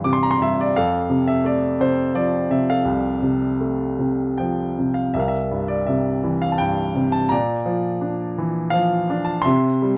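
Warm and peaceful, this short classical passage for solo piano unfolds in a lyrical, rubato 3/4, drifting between 76 and 87 BPM in F major. A clear baby grand carries everything on its own, sounding polished and present up front and reaching from the deep bass up into the high upper register. The harmony moves from C to F, then shifts at 5.1 seconds into a second section that leans on C7 and Bb before settling back onto C near the close. Light reverb surrounds the instrument, while the overall production feels dark and warm, with a faint mains hum beneath the playing. The recording is cut from a longer piece, lasting 10 seconds.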